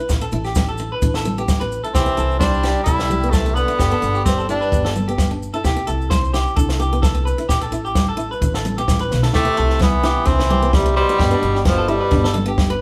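The edgy tenor saxophone stands out most, carrying the melody up front with a light vibrato in a pop style, playing from 1.9 to 4.9 seconds and returning at 9.3 seconds, while a brilliant, distant trombone with scooped notes adds a second line in the background. This is a carefree highlife guitar band excerpt with a gentle swing, cut from a longer piece, built over chords of Am7, C6 and G. A clean electric guitar plays picked arpeggios throughout, and a bright, boxy parlour acoustic guitar adds picked accompaniment behind it. Underneath, a woody pizzicato upright bass sits with a compact cocktail drum kit, dry and up front with a punchy kick and high-tuned snare, and a drum fill lands at 9.1 seconds. Damped, thick-skinned congas played with soft hands and grainy, mellow maracas fill out the percussion in the background, with the maracas dropping out at 9.3 seconds. The whole band sounds as if it is playing live in one room, set in a moderate large studio reverb.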